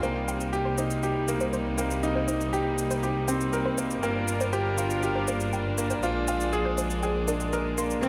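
Moving and hypnotic, this straight 120 BPM piano-and-strings electronica excerpt in C minor sets a brilliant, up-front grand piano riff with delay and shimmer reverb over earthy bowed chamber strings holding sustained chords, a very quiet round analog pluck spinning arpeggios, an expressive bowed double bass section with vibrato, and a layered overdriven shaker, all moving through Cm7, Gm7 and Bb7 in a lush hall before a dark solo cello enters at 8.0 s.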